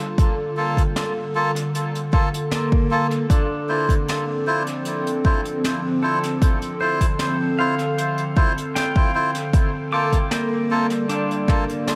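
A warbling, nostalgic pad and a clean, fingerpicked pedal steel guitar with a filter sweep and dub echo open this spacious, meditative ambient dub excerpt, soon joined by a deep, overdriven electronic kick, brushed acoustic drums and reedy, breathy melodica stabs, all drifting over Gm9 and Dm9 chords in a huge, lingering reverb.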